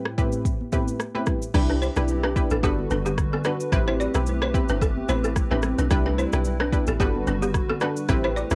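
A detuned, chorused analog pluck opens this breezy, romantic afrobeats excerpt in G major at 110 BPM, joined at once by an overdriven electronic afro-pop kit with a deep kick, rim clicks, shaker and crash, plus very quiet, ringing high-tuned congas, before a dark, round log drum bass and a hollow, flute-like pad arrive at 1.5 seconds and a woody, buzzing balafon riff with analog delay follows at 1.7 seconds, the whole set in light reverb with cassette-tape grain on the pluck, kit, pad and balafon.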